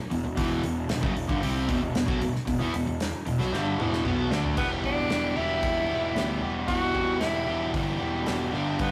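A straight, driving 4/4 at 114 BPM in E minor gives this swaggering classic-rock fragment its push, with a fuzz-soaked picked bass, an up-front cranked stack guitar and a second overdriven guitar, both bright and spring-reverbed, riffing over a gated 80s kit with a punchy kick, airy room and bright cymbals, until a drum fill from 3.5 to 4.6 s ushers in a raspy, gritty tenor saxophone melody with vibrato at 4.6 s, all in a rough rehearsal-room sound with warm saturation and a wet studio reverb.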